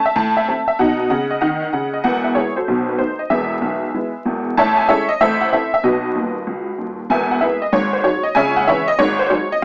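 Worn, warbling old tape with vinyl crackle, pitch drift and a small-speaker sound frames this swinging, playful fragment of stride jazz, set in a moderate studio reverb. A detuned, jangly honky-tonk upright piano plays alone throughout, bright and up front, spanning from deep bass to its upper register. It shifts into a new passage at 2.0 s and tosses in a brief fill at 6.2 s.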